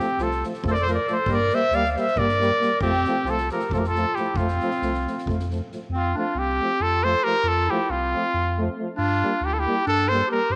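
Bathed in a moderate echo-chamber reverb, this festive, virtuosic Balkan brass band fragment in 7/8 sets a mellow trumpet with light vibrato and tape echo up front on the melody, a warm clarinet on the second line, a dark, smooth-topped French horn and a gently vibrato-tinged euphonium in the background, a deep, round sine sub bass, and a soft-mallet drum kit with a fat snare and boomy kick that drops out at 5.8 seconds.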